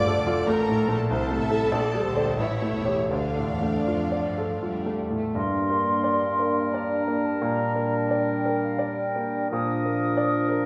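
In a rubato 3/4 that drifts between 79 and 100 BPM, this brooding, passionate fragment of a Romantic movement for piano and orchestra opens in D minor and turns to G minor at 5.3 seconds. The clear grand piano carries the melody throughout, sitting present and up front. In the opening phrase, a dark, woody violin section shares the melody from a distance, while a second, richer violin section adds an expressive second line in the background. An intense viola section supplies accompaniment, and smooth cello and double bass sections hold the bass, all bowed with vibrato. From 5.3 seconds the strings give way to winds: an airy, hollow flute section and a distant oboe trace second lines, a very quiet clarinet adds another second line, a dark bassoon accompanies from the back, and a mellow French horn section holds sustained chords with a soft attack. A moderate scoring-stage reverb surrounds the ensemble.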